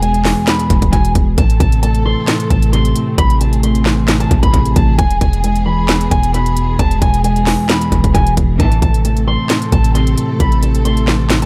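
A half-time 4/4 trap groove at 133 BPM, built on a hard-clipped kick, sharp snare, crisp hi-hats and handclaps over a deep, boomy 808-style bass, drives this menacing, melancholic hip hop excerpt in A harmonic minor, where a boxy fingerpicked parlour acoustic guitar carries a high melody and a mellow tine electric piano accompanies, both filtered and echoing through analog delay, while a dark, woody symphonic string section sustains lush chords in the distance, a studio string section adds brief expressive stabs at 8.6 seconds, and small-room reverb gives the mix a heavy echo.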